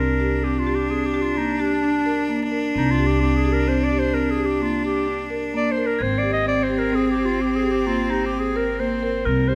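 This contemporary instrumental excerpt moves at 129 BPM in an odd 7/4 metre with a straight feel, and its mood is restless and hypnotic. A clear, classical-style clarinet carries the melody up front, while a bright, intense cello played by one bowed player adds a second line with vibrato and an airy bow. Beneath them, a marimba struck with medium mallets spins arpeggios on woody padauk bars, close-miked and dry, as a pizzicato upright bass with steel strings grounds the harmony in a growly, warm low register. The harmony rests on Csus2 before shifting to Abmaj9 at 6.0 seconds, the same moment soft crotales enter in the background with a high, shimmering, bell-like ring. Detailed microphones and a moderate recital hall reverb keep the parts intimate yet give them a sense of space.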